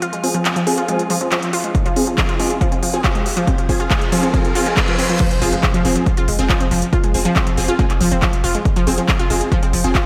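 Hypnotic and intense, this driving peak-time techno fragment opens with a bright, wave-folded unison pluck riff, an aggressive chorused rave stab and a faint, eerie metallic drone, with filter sweeps on the synths, handclaps, smooth hats and a crash building toward a reverse cymbal. The punchy, up-front kick arrives at 1.7 seconds alongside a very quiet riser, and at 5.2 seconds the drone stops as the drop lands with an impact and a thick, saturated sub bass under the pumping groove. Tape echo trails the pluck and stab, and a lush hall reverb gives the whole mix a dreamy, soaked ambience.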